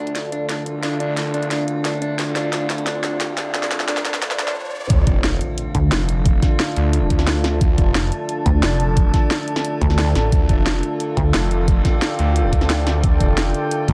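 Bathed in light digital ambience, this tense, dark technical drum and bass excerpt opens on a filtered build-up. A lo-fi, slightly broken-up electric guitar picks arpeggios through dub echo over an eerie metallic drone, a deep moody pad and a swirling, thick phased saw bass, while a cracking snare and bright hats play a fill and a very quiet riser and swell lead to a brief stop, before the drop at 4.9 s brings an impact, an overdriven knocking kick up front, and bursts of heavy, pulsing, saturated wobble bass.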